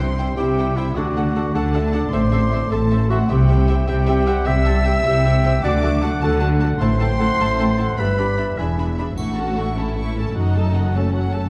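Soaring and triumphant, this heroic adventure film-score excerpt moves at 102 BPM in a straight 6/8 in C lydian, where a rich, focused violin section carries the melody in the background while a lush, smooth-topped second violin section, a dark, roomy clarinet and a mellow cor anglais weave second lines alongside even viola accompaniment. A close cello section and an up-front, softly attacked double bass section anchor the bass, a very quiet ringing harp spins fingerpicked arpeggios, and a distant French horn section holds sustained chords until 9.0 s. At 9.2 s the harmony shifts to A and then F#m as a triangle chimes briefly in the background, all set in a dark, moderate concert-hall reverb.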